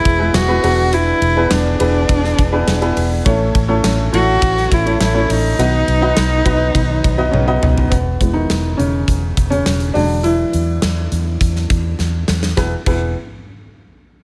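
A hopeful, uplifting piece of piano-driven pop opens with a dark, bowed cello carrying the melody with vibrato and a sul tasto tone, close and up front, over a boxy upright piano accompaniment with short sustain. Both sit in plate reverb, while a fingerpicked, full-bodied jumbo acoustic guitar plays a very quiet riff beneath them. A round, foam-muted electric bass with an amped, vintage character and a huge arena drum kit join almost at once, the kit bringing bright cymbals, a punchy kick and a medium-tuned snare in a hall-like space. The cello drops out at 7.6 seconds, and after a drum fill the guitar stops at 7.9 seconds, when the woody upright piano takes a solo over bass and drums. Another drum fill follows before the piano solo ends at 12.6 seconds, and the whole passage carries light reverb with a small-room ambience, cut from a longer piece.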